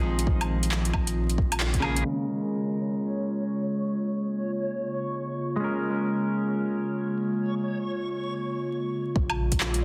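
Ghostly and wistful, this future garage fragment in Bb minor moves at 135 BPM with a swung 4/4 feel, as a bright, twangy clean electric guitar with spring reverb and delay plays over a warbling, nostalgic tape-like pad, both pumping to the sidechain. A round, soft dub sub bass, an overdriven electronic kick and a deep house kit of handclaps, metallic hi-hats and woodblock drive the opening before dropping away by 2.0 seconds, leaving the guitar and the filtered, sweeping pad while a reversed, detuned granular texture drifts in at 2.7 seconds. The beat and bass return around 9.2 seconds, all set in a dense, heavily limited mix with vinyl crackle and the wash of a reverberant recital hall.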